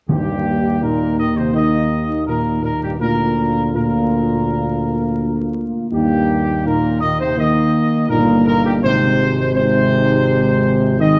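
From 0.1 s, a trumpet section carries the melody over sustained French horn and trombone chords and a tuba bass line, while soft-mallet timpani sound only until 1.1 s. This classical brass passage, cut from a longer piece, is triumphant and majestic, with a straight feel in 4/4. The trumpets are mellow and lightly vibrato-tinged, set up front yet heard as distant and roomy. The horns share that light vibrato from further back, the trombones stay tight with a smooth top, and the close-miked tuba anchors the low end. The round timpani strokes sit in the background, and the ensemble plays on together until 11.2 s in a wet recital hall reverb, with a dark, warm production and a touch of vinyl crackle.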